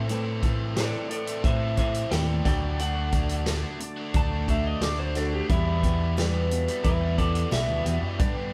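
Folk rock and heartland rock at 89 BPM in 4/4, this dusty, wistful excerpt moves from Am to D to Emadd9 as a band plays live in a stone room with moderate reverb. A punchy, up-front vintage drum kit and a round fingered electric bass anchor bright picked steel-string acoustic guitar and a double-tracked, overdriven stack guitar riff, while a very quiet brilliant grand piano and a clean tonewheel organ through a slow rotary speaker sit far back. From 0.8 seconds, a twangy, slightly broken-up lead guitar through a small lo-fi amp carries the melody between E4 and A5.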